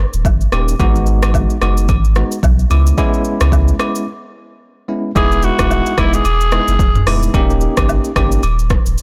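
A thick, saturated sub bass opens this breezy, romantic afrobeats excerpt in E major at 110 BPM with a swung sixteenth feel. Within the first half second it is joined by a punchy, up-front deep house drum kit of kick, smooth hi-hats, rim click, shaker and toms, close acoustic woodblock and agogo bells, and a bell-like, barky tine electric piano, over chords moving from D#7 through G#m7 and C#m7. After a break at 4.1 seconds, a breathy, raspy alto saxophone with light vibrato and delay takes a brief solo over Emaj7 from 5.2 to 7.1 seconds, all in a dry, blown-out, overdriven mix.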